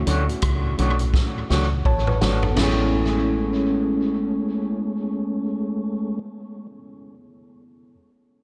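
An 84 BPM groove with swung sixteenths carries this short, romantic and tender lovers rock reggae passage in A major, moving from Dmaj7 to Amaj7. An up-front vintage drum kit with a tight kick, rim clicks and gated reverb plays a fill from 1.1 s and stops at 2.8 s, while a dark, round, foam-muted dub bass punches beneath. Around them sit twangy, slightly broken-up guitar stabs with harmonic tremolo, a flute-like tonewheel organ with chorus vibrato and key click, and a worn, slightly out-of-tune tine electric piano with its own fill, set in the background and trailing tape echo.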